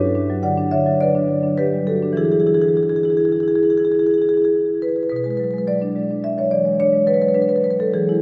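A solo marimba played with medium mallets opens this flowing, hypnotic contemporary classical excerpt in B dorian, moving in 5/4 at about 101-107 BPM with a straight feel, its dark, smooth tone ranging from G2 to F#5 over Gmaj7 and E9 harmonies before shifting to Bm6 at 5.1 seconds, all bathed in a long church reverb and heard from further back in the room.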